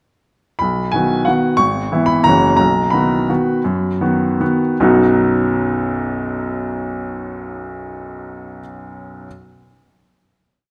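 A classical piano waltz in B major, elegant and playful, this brief whole piece sets a clear, up-front baby grand alone in moderate concert hall reverb, its single-line melody riding a waltz bass in a rubato 3/4 at 148-193 BPM, slowing from 2.1 to 4.8 seconds before a long-sustained final chord sounds from 4.8 to 7.1 seconds.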